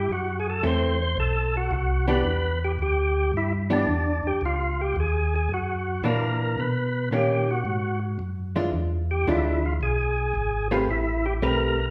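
Bluesy and greasy, this swung jazz passage in 4/4 is cut from a longer piece and rolls along with a loose, lilting eighth-note feel. Up front, a thick, lightly overdriven tonewheel organ carries the melody, its third-harmonic percussion and key click cutting through a fast-spinning rotary speaker. A second tonewheel organ holds down the bass with a round, dark, clean tone, adding vibrato through a slow rotary speaker. At 0.6 s a hollow-body electric jazz guitar joins in accompaniment, picked and compressed with a shadowy, clean sound. The band plays live together in one room, bathed in a lush, large studio reverb, as the harmony drifts through colorful changes such as F#m7b5, Bmaj9 and E7b9 before settling on Am9.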